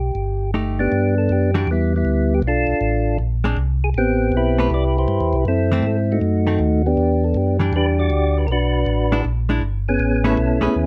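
Swung eighths in 4/4 carry this smoky, bluesy soul jazz organ trio excerpt, where a percussive tonewheel organ with third-harmonic percussion sings the melody and a round, dark organ bass line with key click sits up front, both through a slow rotary speaker, while a clean, compressed hollow-body electric guitar picks an accompaniment from 0.5 seconds over rich extended harmony in a light reverb.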